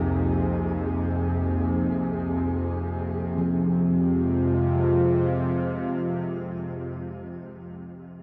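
Ambient music in free time and F minor, dark and ominous, heard as a short portion cut from a longer piece. A tense, string-like bowed drone sits up front with vibrato and its own reverb, joined by a sweeping, resonant pad of detuned sustained chords, treated with chorus, phaser and shimmer reverb, that moves from Bbsus2 to Fm at 3.4 seconds. Beneath them, very quiet gamelan-type bossed gongs play low arpeggios with a bronze, beating tone. A flickering, grainy texture holds a single high Ab until 3.4 seconds, mellow and detuned under built-in and shimmer reverb. The production is dark and warm, steeped in a huge, wet reverb with a long eight-second tail.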